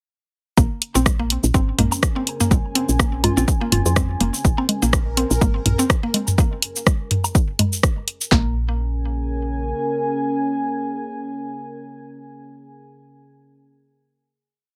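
Minimal techno at 124 BPM in Bb minor, cool and hypnotic, with swung sixteenths. A dry, overdriven analog drum machine drives a four-on-the-floor kick, snare, claps, hats, cabasa and rim click, while electronic woodblock, congas and toms click in cross rhythm and a woody, round FM bass plays a syncopated riff under a percussive mallet-like pluck whose 5-step loop drifts against the bar. A deep, moody sawtooth pad enters at 1.7 seconds, a gentle keys-like lead adds a brief phrase, and a mellow pulsing gated texture holds a high note in the background before the groove gives way at 8.3 seconds to a sustained Bbm7 chord, all under a heavily compressed, radio-like sound with light reverb.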